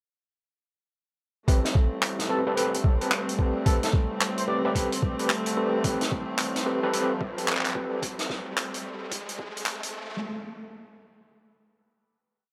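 Glitch hop with a playful, swaggering feel, this short whole piece is a single build from 1.5 s to 10.2 s under a filter sweep, where a thumpy, pitched-down electronic kick and a swung vintage drum kit of high-tuned snare, closed hi-hat and handclaps sit up front, a nasal sawtooth synth bass chops phrases in the background, a barky overdriven tine electric piano stabs a close-voiced riff through tremolo, dub echo and sidechain pumping over sustained, biting bowed strings, a dark, breathy trumpet offers brief jazz-style phrases from a distance, and an electronic riser enters at 4.2 s.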